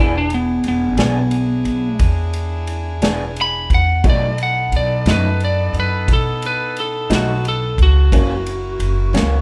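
Laid-back and rollicking, this slow blues in 12/8 moves at 59 BPM, with a bright, twangy, lightly driven lead guitar soloing up front throughout over an E7 to B7 to F#7 progression, in a brief cut from a longer piece. Beneath it, an electric guitar through a small old amp adds slightly broken-up accompaniment with harmonic tremolo, while a distant, soft-attack saxophone section holds mellow sustained chords. A woody, thumpy upright bass with gut strings sits forward, and a natural country drum kit with tight kick, medium-tuned snare and ride cymbal enters at 0.3 seconds, the whole band captured live in one room with light reverb.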